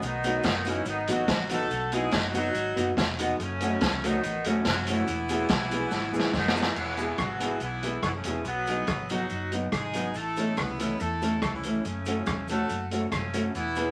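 A clear, tightly voiced horn section leads up front with light vibrato and octave doubling, carrying the melody of this joyful, cheerful ska excerpt at 142 BPM over a mid-forward street-band drum kit with a boomy kick, dark cymbals, rim clicks and a drum fill at 5.9 seconds. A round, punchy hollow-body bass, a clean mellow electric guitar with dub echo entering at 0.2 seconds, and a woody, vintage upright piano adding stabs in the background fill out the groove, while a grainy, very quiet cabasa adds texture. Chords move from F#m through E, B and A before returning to F#m, and the whole track sits in a moderate studio reverb under a layer of vinyl crackle.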